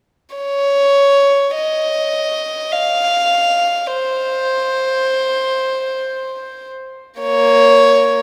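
Classical and expressive, this meditative, yearning fragment of a longer piece features a solo violin in free time, its pure, airy sul tasto tone floating close and up front from 0.4 seconds within a deep, wet cathedral reverb.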